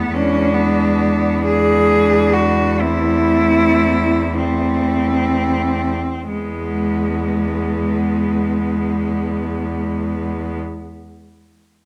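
Four bowed cellos sound together from the start of this fragment of a serene, lyrical classical piece in E major: a bright, intense melody cello is up front, two rich cellos with vibrato carry a second line and a focused accompaniment, and a clear cello holds a low E bass. In a rubato 6/8 at a slow 28 to 52 dotted-quarter beats per minute, the ensemble slows through its opening phrase over E7 and Am/E harmonies before settling onto E at 6.3 s. Close, detailed microphones capture the players within a moderate recital-hall reverb.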